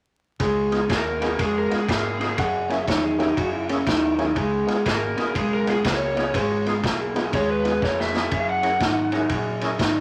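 At 0.4 s a rollicking electric blues shuffle starts at 121 BPM, with a slightly broken-up, lo-fi guitar riff up front, a round, foam-muted bass and a gritty vintage drum kit of punchy kick, medium-tuned snare and dark ride cymbal, moving over Db7 and Gb7 chords beneath vinyl crackle and a large studio reverb. A full tonewheel organ with overdrive, slow rotary speaker and chorus vibrato fills in the middle, while a picked, overdriven lead guitar through a small cranked amp sings a soulful melody on top. A clean, compressed lap steel slide line enters at 2.4 s, and a drum fill at 7.8 s comes just before the return to Gb7 in this cut from a longer piece.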